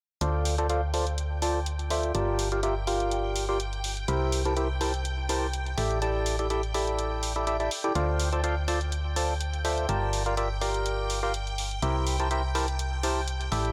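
An energetic, soulful piano house excerpt opens at 0.2 seconds with a percussive organ stab, a solid FM bass, an electronic hi-hat and a string machine arriving together at 124 BPM in 4/4, carrying a light 16th-note swing in D minor. The organ stab leads with a hollow, nasal riff between E4 and A5, sitting up front with chorus, tape echo and a filter sweep running through its whole span. Beneath it, the FM bass is punchy and dark, holding the low end from G1 to D2. The hi-hat has an analog character, re-recorded in a large room, while the string machine's violins hold shimmering, vintage sustained chords around G5, set further back with ensemble chorus. The harmony moves through Dm7, Gm7, C7 and A7sus4 before returning to Dm7, Gm7 and C7, with light digital reverb around the mix until the cut at 13.7 seconds.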